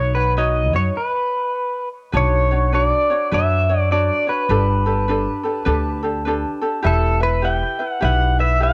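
This short cut from a longer piece has the character of a home recording on cassette, set in a booth with a moderate, brief ambience. It is a dreamy, relaxed Hawaiian tune in B minor at 102 BPM in 4/4, with swing on the eighth notes. Up front, an electric pedal steel guitar carries the melody with a bright, twangy, compressed tone, played with fingerpicks and slide and shaped by volume swells. An upright bass, also up front, is plucked pizzicato on steel strings for a woody low end. Beneath them, an acoustic ukulele is fingerpicked lightly, its mellow accompaniment colored by cassette tape. A stop falls from 1.0 to 2.1 seconds, after which the harmony moves from B minor add9 through G add9 to E minor.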